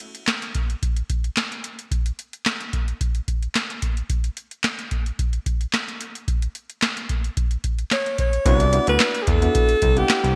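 Early-eighties boogie funk at 110 BPM, smooth and danceable, opens with a booming analog drum machine of deep kick, crisp snare, metallic hats and handclaps in gated reverb, before a breathy, close-miked alto saxophone with vibrato and scooped notes enters at 7.9 seconds, joined at 8.5 seconds by a fat, detuned sawtooth bass and an intimate concert grand piano with audible action noise on a Cmaj9#11 chord, in a bright 1980s-style digital production with light reverb.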